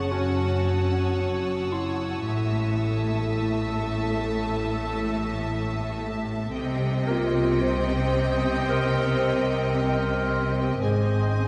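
This slow, mysterious excerpt of a suspense film score opens with the full string body, a dark clarinet and a bubbling synth texture sounding together at 56 BPM in a straight 4/4. A clear violin section carries the high melody with smooth vibrato, while a second, more distant violin section and the roomy solo clarinet trace uneasy lines beneath it. Violas fill the middle with a focused accompaniment, and clear cellos and rich double basses anchor the bottom with bowed weight. The synth holds resonant sawtooth chords that step through random filter changes, coloured by chorus and its own reverb. A lush high violin texture shimmers above until 6.0 seconds, and a brilliant, very quiet baby grand adds polished glints from 0.1 to 10.9 seconds. The harmony drifts from F#m through Am and Cm to G#, and a scoring-stage reverb wraps the ensemble in a wet, resonant space.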